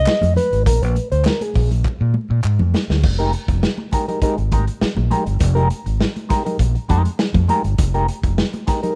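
An overdriven, punchy fingered electric bass drives this sly, driving 101 BPM funk excerpt in F dorian, joined up front by a dark, mellow wah guitar and a raw garage drum kit with a medium-tuned snare, while bright, high-tuned congas sit in the background, hollow group handclaps stop at 2.6 seconds, a clean guitar solo opens the clip, and a drum fill at 1.8 seconds leads into an Fm11 groove from 3.0 seconds, all in a rough home-demo mix with small-room reverb and vinyl crackle.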